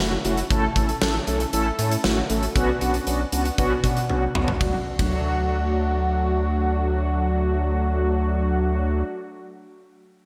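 Wistful and nostalgic, this synth-pop excerpt rests on mellow, round synth brass with chorus, sitting up front over a rubbery, hollow square-wave bass as the chords move from F#m7 through A and Bmadd9 before settling on D. A huge arena drum kit with a fat snare, punchy kick and gated reverb enters at 0.2 s, plays a fill at 4.1 s and drops out at 5.1 s, leaving brass and bass to carry on. The bright 1980s-style digital production is bathed in a lush hall reverb.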